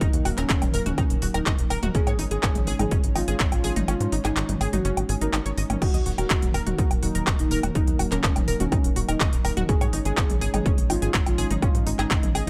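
A round, octave-layered synth lead carries the melody through chorus, phaser and tape echo, set over a deep, moody analog pad that pumps against the beat in this dark, dramatic melodic techno cut at 124 BPM in Eb minor. A tight sequenced synth spins detuned sawtooth arpeggios with dub echo, while a punchy sequencer bass drives beneath a heavy electronic kick and a tape-warm techno kit of smooth hats, handclaps, toms, woodblock and crash. The kick drops out from 3.9 to 5.8 seconds as the chords move between Ebm and Absus4 in a dry mix.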